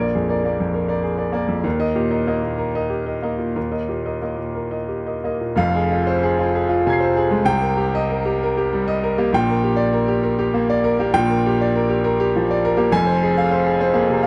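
Wistful and intimate, this short neoclassical minimalist piano excerpt in a rubato 6/8 features a lone grand piano, clear and boxy with long sustain and a slapback echo, spanning F1 to D7 up front in a dry, close 1970s-style studio sound as it moves from Bb7 and Eb into a second section that turns through Fm, Cm7, Gm/Bb and Bb6 before settling back on Fm.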